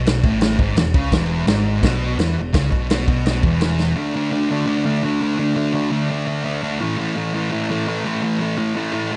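A thick, double-tracked fuzz guitar riff drives this rowdy, raw garage rock excerpt, joined by round, punchy picked bass and an up-front vintage kit with dark cymbals and a punchy kick, until a drum fill at 3.8 seconds hands off to the guitar playing alone from 4.0 seconds through its shifting power-chord riff in a small, lightly reverberant room.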